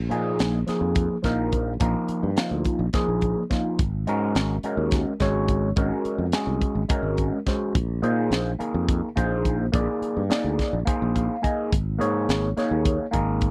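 Electric jazz fusion in a straight 7/8, this short clip from a longer piece feels soaring and bright. A sustaining fretless electric bass opens at 0.0 seconds with a growly, amped tone, joined almost at once by an overdriven tine electric piano and a tight funk drum kit. The piano sounds gritty through a combo amp and is colored by a phaser, playing chords that move from Bb7sus4 to Ab9sus4, then Bb9sus4 and finally Absus24. The drums come from a small room, with a high-tuned snare, a tight kick and hi-hat sitting mid-forward. Around 10.9 seconds the electric piano breaks into a brief fill before the last chord arrives at 11.7 seconds. All three parts sit up front in a dry, close studio sound with a 1970s character and little reverb.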